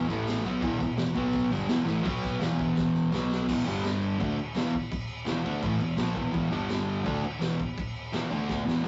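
A double-tracked fuzz guitar riff opens this swaggering, raw garage rock cut from a longer piece, with an overdriven picked bass sitting very quietly beneath it. A gritty acoustic drum kit and a faint, jingly tambourine join almost at once, pushing a straight 4/4 at 168 BPM. The distorted guitar stays up front and churns through power chords centred on E5, moving between A5, B5, G5 and D5. The drums have a high-tuned snare, a boomy kick and crash cymbals, and fills arrive at 2.8 seconds and again near the close. At 3.5 seconds the riff moves into a new section that leans on E5 and G5. The sound is a rough rehearsal-room recording with warm saturation, a rolled-off, dull top end and a wet small-room reverb that keeps the band close.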